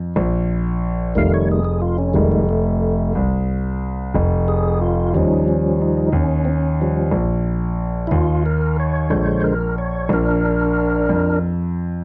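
Dark, warm production with light reverb frames this soulful, rollicking slow blues, a short cut from a longer piece moving at 60 BPM in a straight 12/8. A deep, smooth, vintage-toned concert grand piano holds down the bass up front with short sustain, while a fat, lightly overdriven tonewheel organ enters at 1.2 seconds with sustained chords through a slow rotary speaker and chorus vibrato, its key click audible. The organ is the featured voice as the harmony moves from F9 to Eb9 to Bb9.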